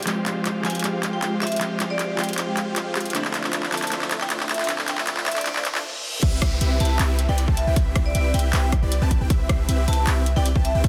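A half-time 4/4 pulse at 156 BPM drives this euphoric, lush future bass passage in C major, where up-front trap drums with metallic hats, a boomy, sidechain-pumped 808-style bass, huge detuned supersaw chords under a filter sweep, a dark clean electric guitar, a very quiet ethereal pad, and a ringing hard-mallet vibraphone melody with tape echo build through risers and a reverse cymbal until the drop at 6.2 s brings in a hard-clipped electronic kick and a dreamy chorused lead playing soft arpeggios in the background.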